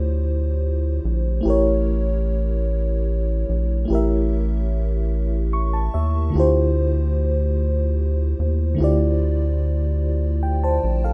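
A rough home-demo sound in a moderate studio reverb frames this sultry, late-night slow R&B piece in 6/8 at 49 BPM in D minor, where a lush, dreamy FM electric piano with a soft pad layer, shimmering with chorus and tremolo, carries the Dm11 and A7b9 chords and slips in a fill from 5.1 to 6.3 seconds, while a rubbery, hollow square-wave bass with a dark, resonant filter pluck sits up front underneath.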